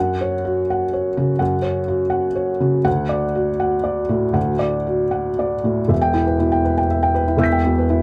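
Close, detailed microphones and a light reverb capture a felt-muted upright piano with a boxy, intimate tone, its action noise audible up front. This melancholic, reflective fragment of neoclassical minimalist piano moves in a rubato three, opening on an F#5 chord before settling on a D chord at 2.9 seconds. A new section arrives on E minor at 5.9 seconds, with the solo piano ranging from deep bass to high treble.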